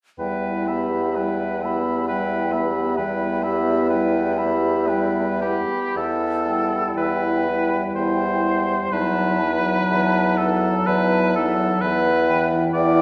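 Solemn and elegiac, this excerpt from a slow romantic classical movement for wind quintet moves in a rubato 3/4 at around 53-67 BPM in E minor, with a hollow, mellow flute carrying the melody in the background while a clear, punchy oboe with vibrato sings the second line up front. A warm French horn and a distant, roomy clarinet fill in the accompaniment, and a present bassoon with light vibrato and a soft attack holds the bass on E2. All five play together from 0.2 to 13.0 seconds in a reverberant recital hall, the harmony resting on E minor, shifting to B7 over E at 8.9 seconds and returning home at 11.8 seconds.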